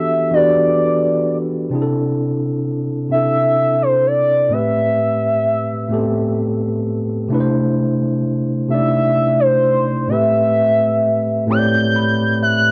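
A smooth, detuned portamento lead with chorus and vibrato glides over a clean tine electric piano, heard through built-in speakers and cassette tape, in this sultry, late-night R&B passage in a straight 6/8, moving from Em11 into a C6 and Am9 sway, with a piano fill at 11.5 seconds and a dusky home-cassette sound in a damp little booth.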